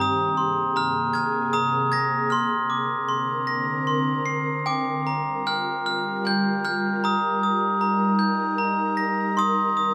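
In a gently rubato 3/4 at 77 BPM, this short, innocent lullaby in Eb major has a glockenspiel struck with hard plastic mallets carrying a bell-like, ringing melody up front. Beneath it, an ethereal, airy pad with a slow attack and ensemble chorus holds detuned sustained chords that move from Abadd9 through Bbadd9 and Gm7 to Eb, arriving on Cm7 at 9.4 seconds. Close, detailed microphones and a moderate recital hall reverb give this tender fragment of a longer piece an intimate glow.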